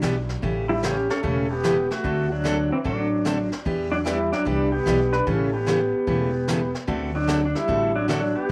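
A moderate plate reverb surrounds this cheerful, playful western swing excerpt at 149 BPM with a swung 4/4 feel, where a bright, full-bodied picked jumbo acoustic guitar sits up front with a pizzicato upright bass, woody and dark, and a jazz kit played with brushes, featuring a high-tuned snare and boomy kick, before a twangy, clean electric pedal steel guitar, played with fingerpicks and slide, enters at 0.7 seconds to carry the melody with volume swells and tape echo over A7, D7 and Em7 changes.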